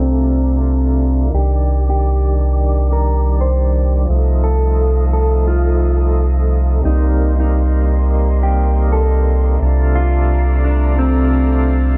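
From the first second, a round, deep dub sub bass sits up front on a held C beneath a thick, lightly overdriven tonewheel organ with key click, slow rotary speaker and tremolo, while a clean, fingered electric guitar carries the melody through tape echo in this smoky, dark trip hop groove at 87 BPM with a loose swing. Far in the background, a muted, veiled chamber violin section bows sustained chords with vibrato, roughened by vintage 12-bit sampler grit and a filter sweep across all 12 seconds of this fragment of a longer piece. The chords move from Bbmaj7/C through Ebmaj7/C, F7/C and Cm7, and the dry, dusky production adds its own filter sweep.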